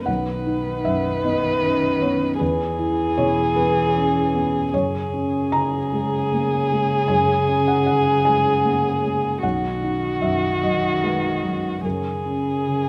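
A muted violin carries the melody in this longing, reflective fragment of neoclassical music for piano and strings, its con sordino tone veiled and dark, with vibrato from a single bowed player sitting up front. Beneath it, a muted cello plays a second line at a lower level, its bowed sound dark and veiled and touched with light vibrato. A felt-muted upright piano supplies the accompaniment across a broad span of the keyboard, its thick felt giving a soft, mellow, intimate sound with a vintage character, placed close to the listener. The music moves in a rubato 6/8, with the harmony passing through B, E and F#add9 before returning to B and settling on F#add9 at 11.8 seconds. All three parts play together throughout the 12.9 seconds, surrounded by a moderate concert hall reverb.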